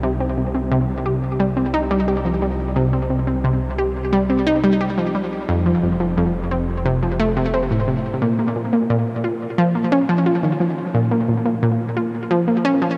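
A steady, straight four-beat pulse drives this fragment of ambient, sequencer-driven space music, and the mood is expansive and hypnotic. Up front, a bright analog pluck repeats a riff throughout. Its detuned sawtooth tone is round, with a fast attack and a decaying tail, thickened by chorus and echoed by delay. Beneath it, a fat analog bass sits low and thick, its sustained sawtooth sound moving through a filter sweep, until it drops out at 8.2 seconds as the harmony shifts into a new section. From there the pluck carries on alone until about 12.9 seconds, all of it bathed in a huge, wet reverb with a long tail and a dark, warm production.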